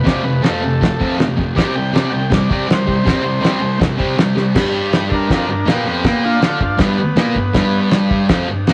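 A thick, fuzz-drenched electric guitar drives this raw, swaggering garage rock excerpt, its picked, double-tracked riff sitting up front with a bright, distorted edge. Over it, an overdriven combo organ with a buzzy, vintage tone and light vibrato takes a solo for the first 4.6 seconds, playing the melody before dropping out at 7.9 seconds. A cloth-damped drum kit thuds along at 160 BPM in a straight 4/4, dry and dark with a fat snare, tight kick, dark cymbals and a rolled-off top, and a drum fill at 4.4 seconds leads into the second section. The harmony moves from F5 to C5, then settles on G as the new section begins. A moderate stone-room reverb and a rough rehearsal-room sound give the whole short passage a loose, live-in-the-room feel.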